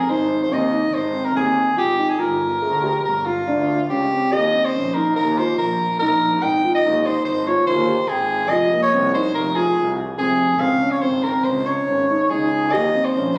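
A raspy, gritty soprano saxophone carries an urgent, restless melody up front at 142 BPM in 5/4, over soft arpeggios from a felt-muted upright piano and a bright, bowed double bass with vibrato, as a deep frame drum sounds very quietly at 12.7 seconds in this contemporary chamber piece, heard through a phone in a concert hall with a 2.0-second reverb, moving from Ab and Gm7 to Abmaj7, Fm7 and Eb.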